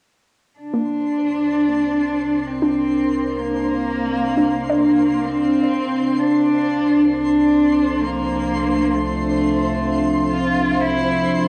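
Ambient piece at 64 BPM in 3/4, set in C mixolydian with a peaceful, weightless mood, heard as a short section cut from a longer work. A single bowed cello carries the melody from 0.6 seconds, its expressive vibrato and portamento sitting up front yet sounding distant, with cassette tape coloring its tone. A glassy, ethereal FM pad with slow attack and long release holds sustained chords alongside it, thickened by ensemble chorus and its own reverb, while a round, deep analog bass fades in underneath on a low C. A twinkling granular texture with octave-up shimmer sparkles high above, washed in plate reverb, and a soft, dark pluck plays arpeggios in the background through chorus and analog delay until 9.2 seconds. The harmony moves from C9sus4 to a rootless Bbmaj9#11 over C at 6.2 seconds, all within a home cassette recording and a wet studio reverb.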